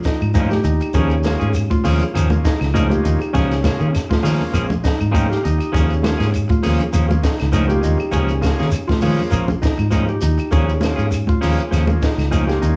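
A dark, round fingered electric bass sits up front, its foam-muted tone anchoring this driving, joyful afrobeat excerpt over an Eb9sus4 chord with a light swing on the sixteenths. A compact cocktail drum kit plays dry and natural, with a high-tuned snare, a tight kick and hi-hat, while a grainy shekere and bright, thin-skinned congas played with soft hands add close percussion, the congas set back in the mix. Woody claves enter at 0.2 seconds in the background, alongside an electric guitar at the edge of break-up whose twangy, slightly broken-up stabs carry a warm edge. A mellow concert harp rings out thumb-plucked arpeggios throughout, and a vintage combo organ joins at 0.9 seconds with clean accompaniment bathed in spring reverb. The organ adds a short fill at 4.8 seconds, and a light small-room ambience frames the whole groove.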